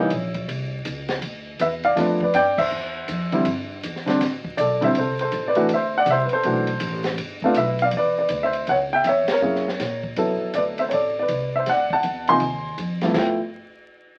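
A baby grand piano carries the melody from the first moment over pizzicato upright bass and a compact cocktail drum kit, a playful, swinging jazz trio at 161 BPM heard as if from a very old 78 rpm record, vinyl crackle and all. The piano sits up front with an intimate, natural tone, short sustain and audible action noise, while the bass is woody on steel strings and the small-room kit is dark and smooth, with a high-tuned snare, punchy kick, hi-hat, ride and crash. The band hits accents together at 2.5 and 9.2 seconds as chords like C#m6, G7 and Dm11/E pass through moderate studio reverb in this brief slice of a longer piece.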